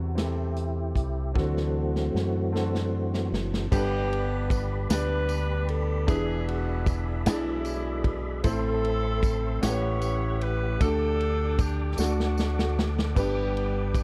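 A lightly overdriven tonewheel organ with key click, chorus vibrato and a slow rotary speaker leads the opening of this jubilant, reverent slow gospel passage in a straight 6/8. It is backed by a clear concert grand piano with deep bass and long sustain, and a round, punchy fingered electric bass through an envelope filter. An acoustic big-band drum kit with a punchy kick and medium-tuned snare sits up front and plays fills. At 3.7 seconds a smooth-topped saxophone section with light vibrato takes the melody alongside a jingly, bright tambourine, and the drums fill again at 12.0 seconds, all captured in a dry, close 1970s-style studio sound.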